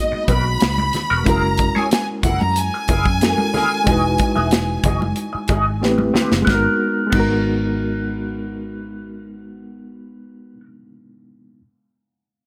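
A clear, close violin section carries the lush, bowed melody up front with vibrato and a slapback echo, singing until 5.8 seconds in this bittersweet, cinematic slice of 1970s-style soul cut from a longer piece. Beneath it, a reedy, worn electric piano with fast tremolo, slightly out of tune and heard through its built-in speakers, holds the accompaniment across the whole passage. A mellow French horn section with light vibrato sustains chords briefly in the background at the opening, while an electric guitar through a small old amp plays a slightly broken-up, lo-fi wah riff. A dark, foam-muted fingered bass gives a round, amped bottom, and a polished, airy drum kit with a punchy kick sits up front alongside very quiet, saturated congas played with soft hands. The harmony moves through rich ninth chords from G#m9 to F#9 and Emaj9, and a drum fill at 5.8 seconds leads into a new section at 6.5 seconds, all set in a light, small-room reverb.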